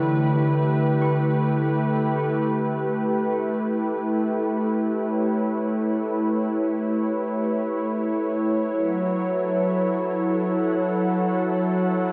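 Serene and reflective, this ambient excerpt drifts in free time, tuned to A4 = 437 Hz. A smooth, detuned analog pad with a slow attack and subtle chorus holds sustained chords up front, moving from A7sus4 to A9 at 2.5 s and then to F#m7 at 8.7 s. A ringing concert harp plays arpeggios through a diffuse delay only until 2.6 s, and a huge, wet reverb with a long tail bathes the recording.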